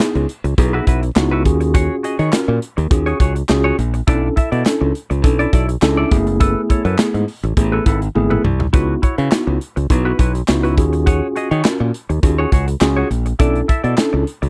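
The drums, a mellow tine electric piano and a semi-hollow electric guitar start together, with a fingered electric bass joining at 0.2 seconds in this early-eighties boogie funk section cut from a longer piece. The mood is late-night and danceable, set on a straight groove in four over a cycle of minor eleventh chords moving from C#m11 through D#m11, Bm11 and F#m11. The acoustic kit of handclaps, hi-hat, kick, snare and toms sits up front, with a punchy kick, a medium-tuned snare and an airy, polished studio-room sound, and a drum fill arrives at 8.2 seconds. The bright, growly bass is just as forward and direct, while the clean electric piano plays accompaniment through its built-in speakers. The compressed guitar riff has a hollow-body tone lightly touched with chorus. The whole recording is dry and close, in a 1970s studio manner.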